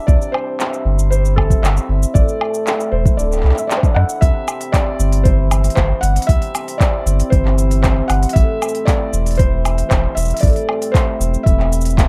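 A felt-muted upright piano and a cimbalom open this wistful, autumnal folktronica piece together. The piano carries a soft, intimate melody in a mellow upper-middle register, and the hammered cimbalom spins shimmering, ringing arpeggios beneath it, both parts trailing delay. Almost at once a round, sine-like sub bass arrives up front, joined by a soft electronic kick and a smooth-hatted kit of handclaps, shaker and woodblock, the drums overdriven and re-recorded in a small room. The harmony moves from C to Am and Dadd9, and the band hits an accent at 3.7 seconds before the music settles back onto C and then Am7 for the longer second stretch. The production is dark and warm in a digital ambience, and the passage is cut from a longer piece.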